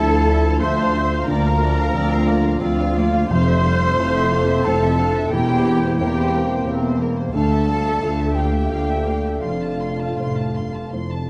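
Close, detailed and lightly reverberant, this tender, uplifting cinematic cue in F major moves in a rubato 3/4 around 88 BPM, with veiled, con sordino violins carrying the melody while a second violin line joins an airy, hollow flute and a smooth clarinet, over rich muted violas, a warm baby grand piano, mellow French horn chords, a faint ringing harp, dark muted cellos and lush double basses, and a brief articulate timpani passage from 3.3 to 4.3 seconds.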